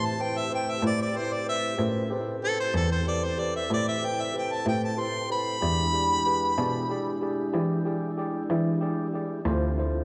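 A wet, cavernous church reverb surrounds this brooding, smoky slow blues in 12/8, and the top end stays dark, as in a large hall. Out front, a clear harmonica carries the melody with vibrato and scooped notes in a jazz-style solo, dropping out at 7.2 seconds. A bowed cello holds the bass with a nasal, reedy gut-string tone in period style, sitting up front though it sounds distant. An overdriven tine electric piano adds barky, gritty accompaniment through a combo amp, while a soft, flute-like tonewheel organ sustains clean chords through a slow rotary speaker. The harmony moves from Am7 to E7#9 at 5.6 seconds, touching Dm7 just before this fragment of a longer piece ends.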